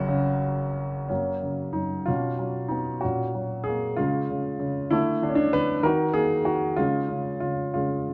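A present, polished baby grand piano plays alone from the first moment in this calm, lyrical classical fragment in F# major, moving at 64 BPM in a rubato 6/8 with uneven beats and tuned to A4 = 445 Hz, its chords passing from F# through Bsus2, F#/A# and C# to D5 and D#m before settling on C#, the piano sitting up front in a moderate recital-hall reverb with a dark, warm production across its brief 8.1 seconds.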